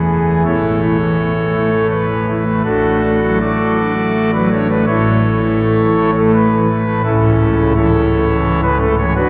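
Reverent and serene, this short excerpt of a classical chorale-style piece in a flexible, rubato 3/4 features a solo pipe organ on thick, romantic foundation stops sitting up front and ranging from deep bass tones to the upper middle register, its chords moving gently between A and D over an A bass before settling on A over C# at 7.0 seconds, all bathed in a long, wet cathedral reverb.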